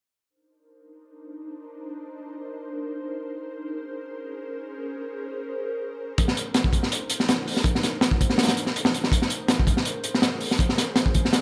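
Atmospheric and raw, this drum and bass passage with jungle roots moves at 163 BPM in 4/4, its sixteenths carrying a light swing. An ethereal, airy pad opens the music at 1.1 seconds, holding slow-blooming, detuned chords that alternate between Cm9 and Bbm9, softened by ensemble chorus, a phaser and its own built-in reverb into a mellow haze. At 6.2 seconds a crunchy breakbeat drum kit arrives up front, with a tight kick, a high-tuned snare and hi-hat. The drums sound saturated and gritty yet dark, their top end rolled off, and they sit well above the distant pad. A light studio reverb frames the whole, and the passage is cut from a longer piece.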